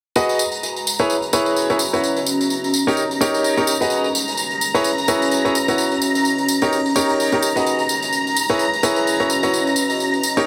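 A clear, intimate baby grand piano riff with audible action noise and digital delay leads this energetic, soulful piano house clip, over a swung tambourine, shimmering vintage string-machine violin chords with ensemble chorus, and a deep, moody detuned pad that joins at 1.5 seconds, all cycling through G#m7, C#m7, F#7sus4 and D#7 in a long plate reverb with a heavily compressed radio sound.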